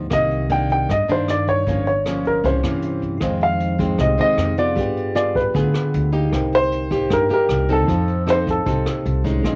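A fingerpicked nylon-string guitar with a cassette-tape color opens this smooth, melancholic bossa nova at 154 BPM alongside a woody pizzicato upright bass. A present, up-front baby grand piano carries the short-sustained melody, while a brushed jazz kit with punchy kick, hi-hat and rim click, also tape-tinged and rolled-off on top, sits just behind. At 3.2 s the key moves from C minor to F minor over chords such as Fm7 and G7b9, and a bright, very quiet bell-like tine electric piano slips in, all in a lightly reverberant home cassette sound cut from a longer piece.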